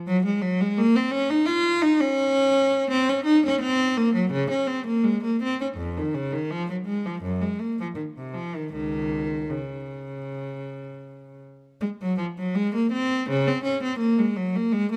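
Captured with close, detailed microphones in a scoring stage whose moderate reverb lingers around the notes, this grave yet flowing baroque-style suite movement for unaccompanied cello unfolds in Db major, tuned to A4 = 435 Hz. A single bowed cello plays alone and up front from 0.1 s to 15.0 s, its rich, focused tone shaded with vibrato as it ranges from Db2 to F4. The 4/4 pulse moves with rubato between 76 and 86 BPM, shifting into a new section at 11.8 s before this fragment of a longer piece breaks off.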